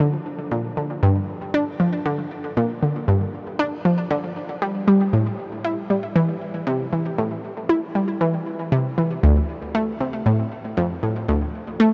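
Huge ambient reverb with a 7.7-second tail surrounds this hypnotic, expansive ambient excerpt in G dorian, moving at 117 BPM in a straight 4/4. A lone analog pluck carries the whole passage, its round, detuned sawtooth tone edged with a noise layer, a fast attack and a short decay. It sits bright and up front, treated with chorus and tape echo, and spans D2 to E4.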